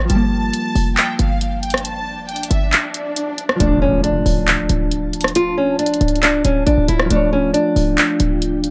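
Melancholic and eerie, this half-time trap cut at 137 BPM in D harmonic minor opens on a mellow, ringing fingerpicked Celtic harp, punchy 808-style bass and a trap kit with bright hats, handclaps and rim clicks, joined briefly by a distant, floating bowed violin section through tape echo, before an electronic swell at 2.1 seconds gives way to an impact at 3.6 seconds as a bright, fingerpicked nylon-string guitar takes the melody up front and a glassy, ethereal FM pad enters very quietly at 4.7 seconds, all within a dark, small-room production.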